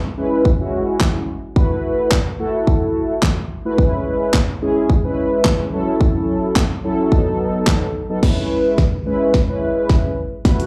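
A straight 4/4 dance-pop groove at 108 BPM in C# minor, carried by an electronic, layered pop drum kit with a punchy kick, fat snare, warm hats, handclaps and crash, sitting up front from 0.5 seconds and breaking into a drum fill that drives a build-up from 8.2 seconds. A mellow, round synth brass part with a detuned sawtooth edge, vibrato and a dark tone holds sustained chords from C#m7 through B7sus4, F#m7 and B7, colored by chorus, sidechain pumping, plate reverb and slapback echo. The bittersweet yet confident mood comes across as a live club performance heard through the venue's PA, with moderate room reverb, in a short cut from a longer piece.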